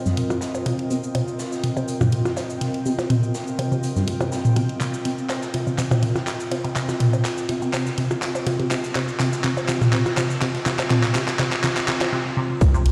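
A breathy, chorused pad in C minor opens this cool, clinical minimal techno build-up at 123 BPM with a light 16th-note swing, joined at once by an up-front, squelchy resonant pluck riff with phaser and delay, bright-hatted garage drums with cabasa and handclaps, a very quiet gritty acoustic kit, and overdriven electronic blips and toms under tape echo, while a woody, buzzing kalimba enters in the background at 5.5 s as filter sweeps and a drum fill build toward a break at 12.1 s, before a tight kick and a rubbery, hollow square bass land at 12.6 s, all washed in lush hall reverb and stone-room ambience.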